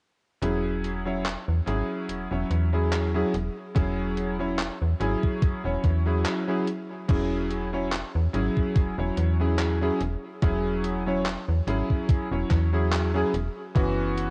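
A bright, cutting electric grand piano with a clangy low end and long sustain sits up front in this dreamy, woozy vaporwave excerpt, its lush chorus and tape echo drifting over a 72 BPM groove in E major with a light 16th-note swing, moving from an E69 chord toward F#7sus4. A snappy, metallic FM bass with tube saturation plays alongside, while a gated 80s digital drum machine adds crash cymbal, handclaps and hi-hat with overdrive and 12-bit sampler grit, and a thumpy, overdriven electronic kick joins at 3.8 seconds. After a brief break at 6.3 seconds, a second section begins at 7.1 seconds, all carried in a cassette-tape sound with light reverb.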